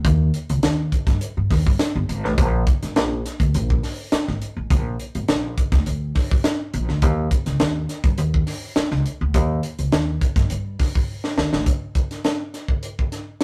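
Gritty and strutting, this short funk excerpt, cut from a longer piece, moves at 103 BPM in a straight 4/4 feel. A woody, dark upright bass played pizzicato on gut strings sits up front, its thumpy low notes spanning G1 to G2 until it stops at 11.6 seconds. Beside it, a crisp fusion drum kit of hi-hat, kick and snare pairs a high-tuned snare with a punchy kick, heard in a pumping small room and placed close to the listener. The drums play a fill from 11.1 to 11.7 seconds that leads into a brief closing passage, where the kit carries on until 13.4 seconds. The rough rehearsal-room recording carries tube saturation and moderate studio reverb, giving the pair a raw, lived-in edge.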